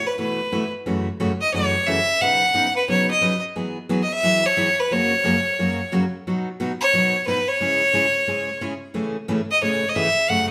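A clear, earthy bowed fiddle carries the swinging melody with a light vibrato in this cheerful, playful country excerpt, joined at 0.2 s by a full-bodied picked dreadnought acoustic guitar in accompaniment, both up front and played live together in a reverberant stone room, with the fiddle the louder of the two.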